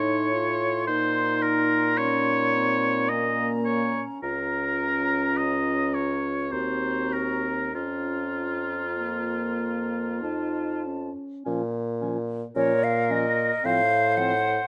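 Classical slow romantic movement for wind quintet in Bb minor, a solemn, elegiac cut from a longer piece in rubato 3/4 at 47-57 BPM, where a hollow, airy, close-miked concert flute with vibrato and a crisp attack carries the melody over an up-front oboe second line with light vibrato and a vintage tint, while a dark, soft-edged French horn and a distant, roomy clarinet fill in the accompaniment above a mellow bassoon bass, all five sounding from the start and the harmony returning to Bb minor at 11.5 s, set in a moderate large-studio reverb with a dark, warm production.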